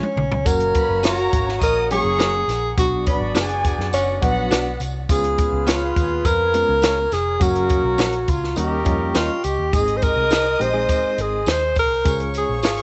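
A breathy, subtoned tenor saxophone carries the melody up front with tape echo, leading this joyful 1960s-style soul excerpt at an uptempo 104 BPM in F# major, which shifts up to Ab major at 9.7 s. Around it, a barky, reedy electric piano with light overdrive and fast tremolo plays accompaniment, a clean, direct-recorded guitar adds bright stabs in the background, and a loose jazz-style horn section plays a second line until 9.4 s, while a distant, hollow flute section holds very quiet sustained chords. A dry cocktail drum kit with a high-tuned snare and punchy kick opens with a fill, joined by a dark, foam-muted picked bass, a faint jingly tambourine and an expressive, close studio violin section that drops out and then returns for the key change, all in a small room sound.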